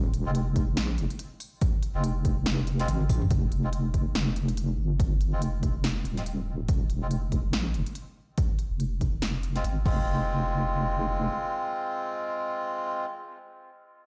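Deep dubstep with a cavernous, meditative mood and a half-time, swung feel, cut from a longer piece and heard through a big sound system in a bare stone room. A deep, mellow wobble bass with chorus opens on a drop over F minor. It is joined first by a layered house kit with smooth hats, toms and crash, then by a reedy, breathy melodica throwing out stabs through dub echo, and then by a punchy electronic kick. A drum fill leads at 3.3 seconds into a chordless stretch where a filter sweeps across the bass, before F minor returns at 10.1 seconds and the melodica lingers alone until 13.1 seconds.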